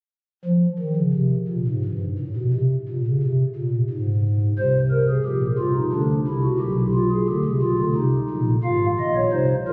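Captured on a phone inside the room, this short excerpt is bathed in a long, wet cathedral reverb with a 4.2-second decay, layered with club-style reverb and compression. It is a solemn, contemplative baroque-style fugue in three voices, set in a steady triple metre and cut from a longer piece. A single pipe organ plays alone throughout, its soft, hollow stopped-flute registration sitting up front and reaching from Ab1 up to F5. The voicing leans romantic and mellow within the strict contrapuntal form. The harmony stays unstated until 4.6 seconds, when it settles on C, then moves through D7 and G7 over B to C minor, arriving at F minor over Ab by 8.7 seconds.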